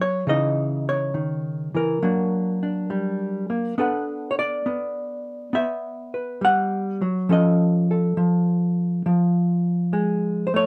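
Swinging and playful, this brief cut from a longer solo jazz piece features a clean, dark hollow-body electric guitar played with the fingers and sitting up front in light reverb, moving at a relaxed 68 BPM in swung 4/4 through C#madd9, F#, Bm7 and F7alt across a range from C#3 to F#5.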